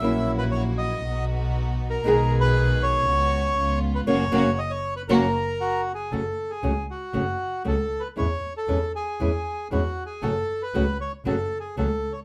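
A reedy, dark bandoneon carries the melody of this melancholic, sultry tango from the start, over a woody, fingerpicked nylon-string guitar on old strings, a bowed double bass with vibrato and portamento, and a rich chamber string section adding soft-attack stabs with light vibrato until 5.3 s. Moving at 117 BPM in 4/4 with a rubato feel, the music begins in F# major, the band lands a shared accent from 4.1 s, and at 6.1 s the harmony turns to F# minor. A moderate studio reverb surrounds the parts of this excerpt, cut from a longer piece.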